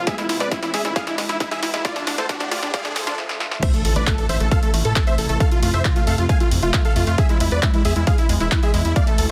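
From the first moment, a build-up of uplifting trance surges forward: a huge, detuned supersaw melody rides over a gritty, saturated synth bass and a shimmering, ethereal pad, while a lush unison pluck arpeggio sits in the background under a filter sweep and a riser climbs behind a drum fill. At 3.6 seconds the drop arrives with an impact, the overdriven, layered kick, playing from the start, stays up front and a dry analog drum machine keeps adding punchy snare, handclaps, hi-hat and crash cymbal. The supersaw, pad, bass and pluck breathe with sidechain pumping through a chord cycle that returns to E. The mood is euphoric yet bittersweet, and the dense, heavily limited master keeps the sound close and dry in this fragment cut from a longer piece.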